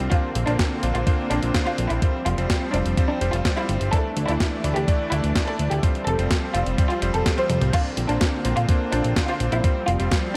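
A thumpy, up-front electronic kick drives this romantic, danceable italo disco excerpt at 126 BPM in F major, alongside a fat, saturated analog bass and a clean 12-bit drum machine with a medium-tuned snare, gated reverb and a short fill at 7.4 seconds. A bright, clangy electric grand piano plays delayed stabs while a lush, detuned unison pad holds chorused chords in the background, moving through Bbadd9, Fsus2 and Dsus2. Over this, a close, focused studio violin section carries the melody with vibrato and delay, all set in light reverb.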